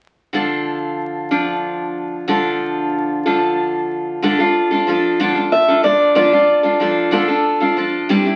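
In a slow, straight 6/8 at 62 BPM, this reflective, haunting acoustic folk excerpt in D minor rests on a picked steel-string guitar accompaniment, boxy and parlour-sized with fresh strings, playing from 0.3 s on a D minor chord. At 5.5 s a second picked steel-string guitar enters with a bright, auditorium-bodied melody in a higher register, lasting until 7.8 s, both guitars sitting up front. The sound carries a wet club reverb and the crackle of a very old 78 rpm record, lending the brief passage an aged atmosphere.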